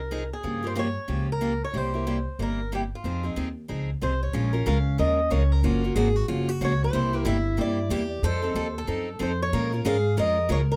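A bright, boxy swing-style acoustic guitar with audible finger squeak and a slapback echo carries the fiery, virtuosic melody of this jazz manouche cut at 185 BPM, moving from F minor to Bb minor at 4.3 s, over a woody pizzicato upright bass up front and a full-bodied jumbo steel-string guitar accompaniment, while a parlour steel-string guitar with fresh strings adds a second line from 4.3 s, all heard through close, detailed microphones in light reverb.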